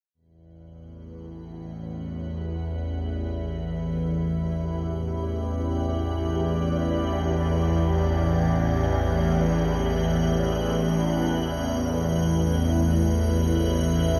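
Dark ambient drone in free time, cavernous and desolate, cut from a longer piece and set in a vast, echoing space with a long, wet reverb tail. A tense, string-like bowed drone with phaser and vibrato sits up front from 0.7 seconds, joined at 1.0 seconds by a faint icy, crystalline glass pad with chorus, and at 2.0 seconds by a deep, moody pad holding sustained chords, which fades in over the whole passage. The harmony rests on A9sus4 before settling onto E5 at 10.6 seconds.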